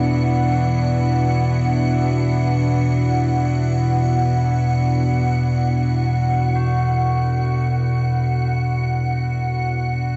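Drenched in a cavernous reverb and the warbling pitch drift of worn cassette tape, this fragment of dark ambient drone floats in free time over a Bm/E chord, desolate and ominous. A deep, rumbling synth drone sits up front beneath a dark, reedy chamber cello section holding bowed chords with light vibrato, while an icy, crystalline glass pad shimmers high above through chorus. At 6.6 s solemn, metallic tubular bells enter in the background with mellow arpeggios trailed by delay, and both the bells and the cellos fade out across the fragment.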